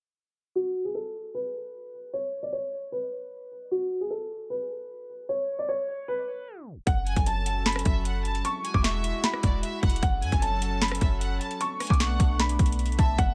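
A dry recording opens this brooding, hard-hitting trap piece in F# minor at 152 BPM with a half-time feel, where an up-front, dark, boxy grand piano carries the melody through a filter sweep and digital delay, with a tape stop arriving at 6.5 seconds. At 6.9 seconds the electronic trap kit arrives with a hard-clipped kick, sharp snare, rim click and metallic hats, alongside a deep, boomy sine 808 bass and a detuned sawtooth pad with chorus holding chords over F#m, Eadd9 and Bm7. From 7.1 seconds a lush, bowed violin section with vibrato adds a second line through its own delay.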